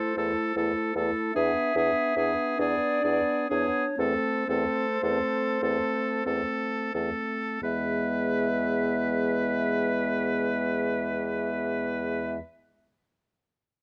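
A flute with a pure, crisp-edged straight tone sings the melody over a bright oboe line with light vibrato, while a mellow clarinet and a warm, roomy French horn hold a soft accompaniment, and a bassoon settles onto its low bass note at 0.2 seconds. This serene, slow romantic movement for wind quintet sways in a rubato 6/8, slowing gradually until 7.6 seconds, where the shadowed minor-tinged harmony resolves into a brighter major chord for the closing passage. Close, detailed microphones and light reverb keep the oboe present and up front, while the flute, horn and bassoon sit farther back.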